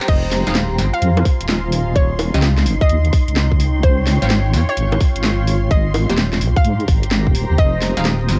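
Two-step UK garage at 128 BPM in F minor, moody and bouncy, with swung 16ths and a tight, up-front electronic kick under a cracking snare, handclaps, hi-hats, bongos and crash cymbal, all carrying a small-room, cassette-worn grit. A deep, dark wobble bass sits prominently beneath a hollow square-wave pluck melody and background chord stabs, both touched with tape echo, moving through Fm7, Eb7, Dbmaj7 and Abmaj9. A silky vintage string machine with phaser and a blurred, evolving granular cloud pad breathe with sidechain pumping behind them, and the lo-fi home-cassette sound with light reverb frames this 8.4-second excerpt from a longer piece.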